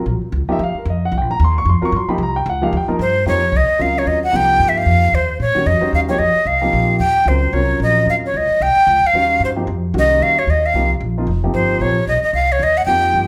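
This modal jazz excerpt moves at a brisk 224 BPM in 4/4, with a light swing on the eighth notes and a searching, intense mood. A dark, mellow concert grand opens on an F9sus4 chord, its intimate sound carrying audible action noise and deep low notes. The acoustic upright bass joins almost at once in pizzicato, woody and up front. At 3.0 seconds a breathy, bright jazz flute takes the melody in a fairly narrow upper range, with a crisp, chiffy attack, a reedy edge and vibrato. The flute is the most prominent voice, and the trio plays together live in one room with a moderate large-studio reverb around them.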